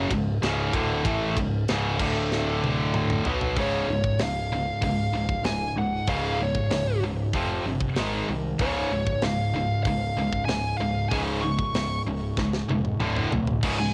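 A straight 4/4 heavy metal groove opens this dark, heavy excerpt, with a bright, up-front high-gain guitar and a tighter distorted guitar both playing the riff, a growling, overdriven picked bass underneath, and a tight acoustic drum kit with a rolled-off top and a drum fill at 2.3 seconds. At 3.6 seconds a dusky high-gain lead guitar enters up front with the melody, colored by tape echo, and another drum fill arrives near the end at 12.4 seconds. The home cassette recording is dry, lending the guitars and drums a gritty tape character.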